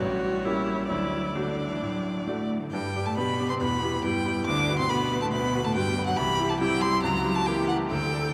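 Set in a vast, echoing space with a long, wet cathedral reverb, this cheerful, spirited excerpt from a quick classical-period movement for piano quartet moves with a flexible, rubato feel in 4/4. Up front, a clear, focused violin carries the melody with vibrato, joined by a bright, brilliant grand piano in accompaniment. Beneath them, an expressive cello with soft attack and portamento supplies a second line, while a warm viola sits in the background. The harmony moves from A7b9 to D, and a new section opens at 2.7 seconds on G before passing through Em and C to a C#dim7.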